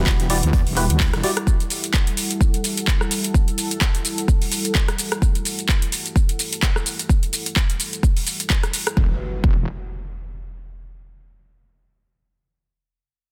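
Bass house at 128 BPM in E minor, this bouncy, aggressive excerpt from a longer piece rides a swung sixteenth-note feel over an Emadd9 chord. A punchy, layered electronic kick sits up front from 0.1 s to 9.5 s, joined by a house kit of handclaps, metallic hi-hats, rim click and shaker, both carrying studio reverb. A faint acoustic arena kit adds hall-toned hi-hat and a medium-tuned snare only from 0.1 s to 1.4 s. A heavy, saturated wobble bass with detuned sawtooth and sine layers, overdrive and chorus punches in at the start and returns from 9.0 s. A hollow, organ-like stab with chorus and dub echo flickers briefly at the top, while a bright, evolving sawtooth pad with a sub octave and filter swell holds sustained chords until 9.2 s, pumping against the kick. An electronic impact closes the passage from 9.0 s in a dense, heavily limited mix with little reverb overall.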